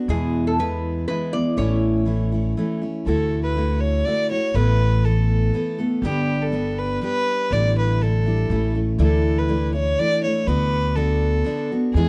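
A bowed fiddle carries the melody in this hopeful, nostalgic acoustic folk piece in three-four time, entering at 3.1 seconds with a woody tone, light vibrato and a close, up-front presence. Before it arrives, a lap resonator guitar, played with fingerpicks and a steel bar, takes a short solo with a metallic, nasal voice and drops out by 2.5 seconds. Underneath, a jumbo steel-string acoustic guitar provides picked, full-bodied accompaniment, while a pizzicato upright bass with gut strings adds a dark, thumpy foundation throughout. The harmony moves through suspended and added-note chords, lending the straight feel a gentle, open glow. The sound is dry and intimate, like a 1970s studio session with only a touch of reverb, and the recording is cut from a longer piece.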